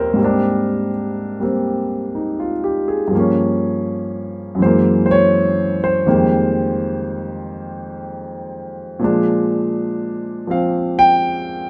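A warm grand piano carries this short solo jazz excerpt alone from start to finish, sitting up front in the sound. The tempo is 82 BPM in 4/4, with eighth notes swung. The piano ranges from Eb2 up to G5, moving through rich extended harmonies that open on Abmaj9#11 and pass through Gm7b5, Gb9 and Fm11 before arriving on Bb7 at 9.0 seconds. A moderate reverb from a large studio gives the instrument a sense of space around it. The mood is warm and swinging, a brief glimpse cut from a longer piece.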